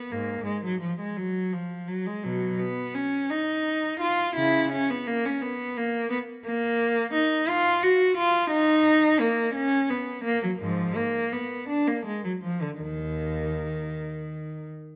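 A single bowed cello opens at 0.0 s, up front in a moderate recital-hall reverb, playing a solemn, grave, baroque-style suite movement in 6/8 at a slow, rubato 52-58 BPM, tuned to A4 = 438 Hz. Its rich tone carries expressive vibrato, soft attacks and portamento slides across a range from Eb2 to Gb4, beginning in F# major and turning to Eb minor at 6.5 s. The cello plays alone until 14.7 s in this short passage cut from a longer piece.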